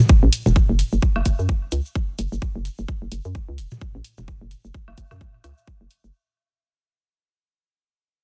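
A hollow, knocking FM bass sits up front in this short minimal techno clip, its punchy, fast-attack notes decaying into a mellow, bouncy pulse that pumps with sidechain compression. The tight, layered electronic kick drum is equally forward, tape-warm and set in studio reverb, entering at 0.1 seconds. An electronic hi-hat shares that taped character and studio reverb, while electronic toms and woodblock, re-recorded in a large room, trail tape echo through the space. A grainy, bright egg shaker, close and dry, rides low beneath the other parts from 0.0 to 6.1 seconds. The 16th-note swing gives the sparse, clinical groove a slight lilt within its digital ambience and dense, heavily limited master, and the whole fragment fades out across its 6.1 seconds as a cut from a longer piece.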